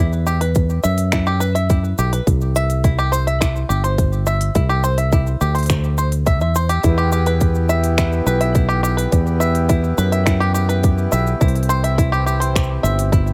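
A straight 4/4 pulse at 105 BPM comes from a tight electronic kick and a crisp kit of finger snaps, hi-hat and shaker with a large-room ambience, under a growly, up-front fingered electric bass in this wistful, delicate folktronica passage in E minor, cut from a longer piece. A twangy, percussive bluegrass banjo, played with fingerpicks, spins arpeggios through tape echo over chords that alternate between Em and C. At 6.8 seconds a reedy, breathing hand-pumped harmonium joins with sustained chords, and the overall sound stays dry and close.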